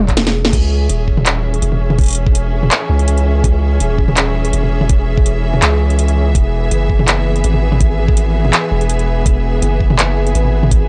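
A short drum fill opens this heavy, cinematic half-time drum and bass excerpt, over a deep, sine-toned 808-style bass with long decaying notes and a pulsing, detuned gated texture with chorus and reverb sitting in the background. From 0.5 seconds a lush, bowed studio string section holds sustained chords with vibrato, pumping against the knocking electronic kick. The layered kit brings a cracking snare, metallic hats, handclaps, toms and crash cymbal, tape-coloured and up front, in a dry, gritty recording with a dull cassette top end.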